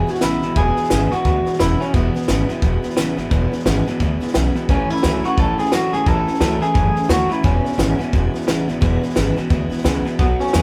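A rowdy, upbeat rockabilly cut taken from a longer piece, it runs at 174 BPM in 4/4 with a 60% swing on the eighths, sitting in E major and moving from E to A at 4.7 seconds and back to E at 7.4 seconds. Up front, an electric guitar through a small old amp carries the melody between B3 and A4 with a twangy, slightly broken-up picked tone. A second electric guitar through a similar amp plays a low riff from E2 to G#3, its warm, picked sound bathed in spring reverb. An upright bass, plucked on gut strings, gives a woody, thumpy bottom. Behind them, a bright dreadnought acoustic with fresh strings picks the accompaniment in the background. A compact cocktail drum kit comes in at 0.1 seconds, dry and natural, with a high-tuned snare, punchy kick and hi-hat pushed up front, and the whole band sounds as if it is playing live in one room with light reverb.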